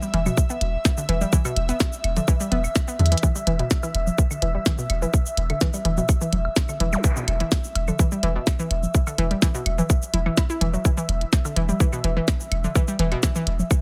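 Dry and intimate, this quirky, sparse minimal techno excerpt sets a tight, tape-warm kick and a deep, punchy sine sub bass up front under a hollow, bouncy, wave-folded square pluck riff with chorus, tape echo and sidechain pumping, while a clicky drum kit of tiny snare, hi-hat and cabasa ticks along, a drum fill lands at 3.0 seconds, background woodblock, congas and claves fill in the groove, a soft, breathy pad sustains a single high note, and a brief electronic zap flickers at 6.9 seconds.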